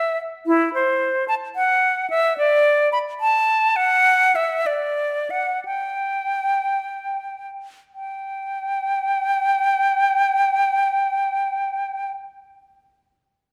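Radiant and dance-like, this short baroque-style fantasia for unaccompanied flute moves in a lilting 6/8 with a free, rubato feel. The solo concert flute is close-miked and up front, airy with vibrato and a soft attack, ranging from E4 to B5 as it plays from 0.0 to 12.1 seconds. The line slows between 2.9 and 7.9 seconds before a new section begins, and a wet concert hall reverb surrounds it in this passage cut from a longer piece.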